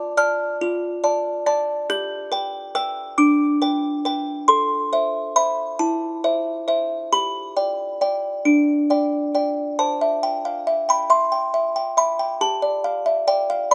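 This classical lullaby for music box, a short fragment cut from a longer piece, feels innocent and dreamy, moving in an unhurried 6/8. A single large music box plays solo, its delicate, tinkling plucked tones sitting bright and up front, spanning from the middle register high into the treble, with a moderate plate reverb lending a soft, lingering halo. The harmony drifts from Dm through G and Am before a new section at 9.8 seconds settles on C and closes on an open G7 that leaves the phrase hanging.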